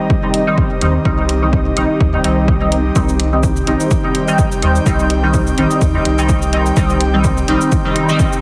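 A heavily compressed, radio-like mix sits in a moderate digital room, framing this cavernous, deep dub techno excerpt at 126 BPM in C minor, swung on the sixteenths and held on a single C minor chord. Juicy, detuned stabs from a resonant sweep polysynth sit up front with chorus, phaser, dub echo and sidechain pumping, over an airy, breathy pad of sustained chords that also pumps and shimmers with chorus. A punchy, overdriven electronic kick and gritty hi-hat and shaker enter within the first second, and a round sine sub bass joins at 0.8 seconds and pulses under the sidechain until 7.6 seconds.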